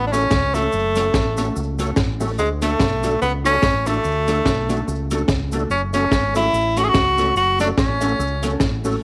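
A clear tenor saxophone with light vibrato leads up front over a round, punchy fingered bass from the opening of this driving, energetic ska excerpt at 145 BPM in F# minor with swung eighths, and at 0.1 s a gritty, saturated breakbeat kit with a high-tuned snare, a mellow guitar with phaser and slapback echo, a fat, lightly overdriven tonewheel organ with key click and slow rotary speaker, and a grainy cabasa join over an F#m, D, F#m progression in a studio room with moderate plate reverb.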